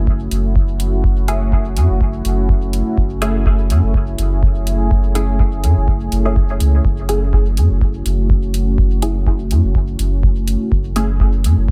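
A round, mellow sine sub bass sits up front and pumps against the deep, tape-warm kick in this hazy, meditative dub techno excerpt at 124 BPM in F# minor, swung on the 16ths and resting on a single F#m7 chord. A moody, detuned sawtooth pad with slow attack, chorus and built-in reverb holds sustained chords beneath, while faint metallic hi-hats tick from 0.3 seconds. From 1.3 seconds a muted, filtered chord stab with phaser, 12-bit sampler grit and dub echo adds short plucks, all set in an echo-heavy digital ambience.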